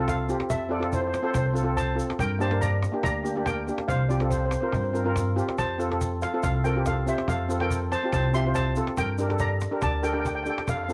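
A lightly swung calypso groove at 142 BPM in 4/4 comes from a snappy cajon played with soft hands and a grainy, bright egg shaker, while a woody, thumpy upright bass plucks low on gut strings. Up front, a shimmering lead steel pan carries the carefree, festive melody in F major on an airy tone, and cello pans add mellow, cassette-tinged accompaniment through F, Gm, Csus4 and Gmadd9. Light reverb colors this home cassette recording, and the passage is cut from a longer piece.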